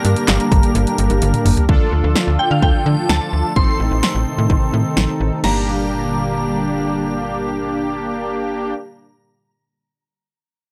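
Synth-pop in G minor at 128 BPM, this short excerpt cut from a longer piece carries a melancholic, nocturnal mood over a straight 4/4 pulse. A punchy, tape-warm house drum kit of kick, snare, hi-hat, handclaps, toms and crash sits up front, playing a fill from 1.2 to 1.7 seconds before dropping out at 5.5 seconds. Beneath it, a snappy FM bass with a metallic attack drives the low end, while a string machine voicing cellos holds soft-edged, full-bodied sustained chords through Gm, Dm, Adim and back to Gm at 5.4 seconds. Bold, detuned analog synth brass with a sawtooth bite and chorus fills out the accompaniment, and a shimmering, dreamy FM bell carries the high melody through ensemble chorus, tremolo and analog delay. The whole sits in a digital ambience on a dry, gritty hardware recording.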